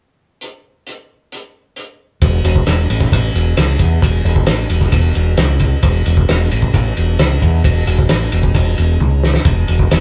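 Swaggering and sunny, this classic rock excerpt in a straight 4/4 opens with a cloth-damped, thuddy drum kit of fat snare, tight kick, hi-hat, ride and toms, joined at 2.2 seconds by a growling, overdriven fingered electric bass sitting up front, with a drum fill at 9.0 seconds, all in a rough rehearsal-room recording with moderate booth ambience.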